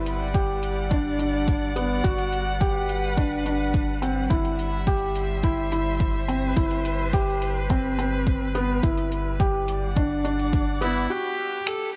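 A straight 4/4 pulse at 106 BPM comes from an overdriven electronic kick and a deep house kit of finger snaps and metallic hi-hats, anchoring this luminous, tender piano-and-strings electronica excerpt in G major. Up front, a felt-muted upright piano plays a mellow, intimate riff with audible action noise and tape echo, over a round analog bass holding G1 and a distant string quartet sustaining chords with vibrato and portamento; both bass and strings carry sidechain pumping. The harmony moves through Em7/G, Gmaj7, C/G and Gadd11 in a small room, and at 10.8 s a single viola enters with a pure, floating sul tasto melody.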